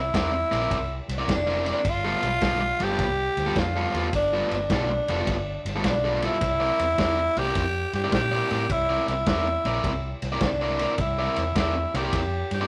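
A raspy, growling tenor saxophone leads this gritty, laid-back electric blues shuffle at 105 BPM with a swung feel, backed by an up-front overdriven guitar riff, a dark, round foam-muted fingered bass and a muffled, lo-fi vintage drum kit of kick, snare and ride, all moving from C9 to G9 and back to C9 in a rough rehearsal-room sound with light reverb and tube saturation, cut from a longer piece.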